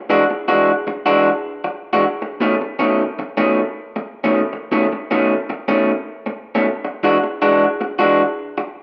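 Swung eighths at 104 BPM in 4/4 carry this soulful, swaggering blues fragment, where an electric guitar through a small old amp plays solo from 0.1 to 8.6 seconds, its picked, slightly broken-up, compressed lo-fi tone sitting up front with spring reverb over E9 and B9 chords in a moderate live-room ambience.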